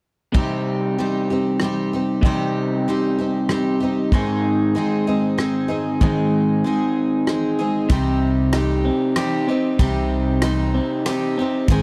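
A shimmering, octave-doubled twelve-string acoustic guitar rings out up front, its picked chords full-bodied and jumbo-sized, carrying the accompaniment in this reflective, wistful folk rock and heartland rock excerpt. Beside it, an electric guitar through a small old amp plays a slightly broken-up, compressed riff, both guitars starting at 0.3 seconds and moving between Cm and Ab in C minor. A natural country drum kit sets a 95 BPM pulse in 3/4 with a punchy kick, bright ride cymbal and rim click, captured in a studio room. At 7.9 seconds, as the harmony returns to Cm and a new section begins, a growly, amped fingered electric bass joins up front, anchoring the low end. The dry, close 1970s-style sound keeps every part near and intimate, with little reverb, until the fragment is cut off at 11.8 seconds.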